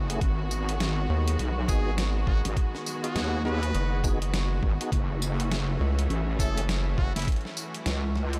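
A clear, biting string section sustains gritty 12-bit chords that pump against a heavy, saturated wobble bass from the start of this playful, swaggering glitch hop excerpt at 102 BPM with a swung 16th feel, as a thumpy, pitched-down kick and gritty boom bap kit of hi-hat, snare and tambourine drive it, a very quiet tonewheel organ adds key-clicking stabs, a rubbery, nasal square bass bounces in at 1.1 seconds, and a brilliant, punchy trumpet sings a background solo through tape echo from 1.7 seconds over G#m7 moving to F#m7, all in light reverb.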